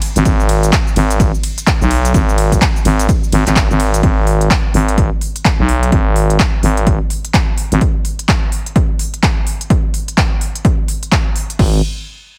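This bouncy, aggressive bass house excerpt opens on a drop with an overdriven big-room drum kit of crisp hi-hats, handclaps, shaker, ride and crash cymbals, soon joined by a thick, growling FM bass with tube saturation and sidechain pumping that drops out at 7.8 seconds and returns only for a brief hit at 11.6 seconds, and a punchy, up-front electronic kick with the same grit, all in a dry, heavily compressed mix with a radio-like sound and a swung sixteenth-note feel.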